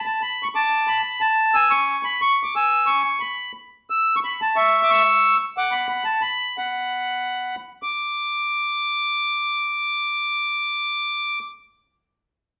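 A large studio's reverb surrounds this short musette fragment, cut from a longer piece, with the accordion placed clear and up front. Playing alone in a straight 3/4 feel at 127 to 183 BPM, the single-reed, dry-tuned accordion sings a reedy melody high in its range, touching on a suspended harmony at 3.5 seconds before slowing between 5.5 and 7.8 seconds and moving into a new passage. The mood is nostalgic and charming.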